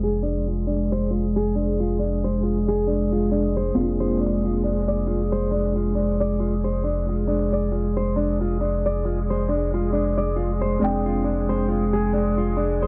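A swung 16th-note pulse at 68 BPM in 4/4 drives this brooding, cinematic trip hop fragment, where a deep, round analog bass with tube saturation sits up front beneath distant, earthy chamber strings holding sustained chords, a soft felt-muted upright piano with audible action noise, tremolo, tape echo and a filter sweep, and a bright fingerpicked nylon-string guitar whose arpeggios carry finger squeak, tape echo and a filter sweep of their own, over a small-room ambience with vinyl crackle as the harmony moves from Fm69 to Bbadd9/F at 3.8 seconds and back at 10.8 seconds.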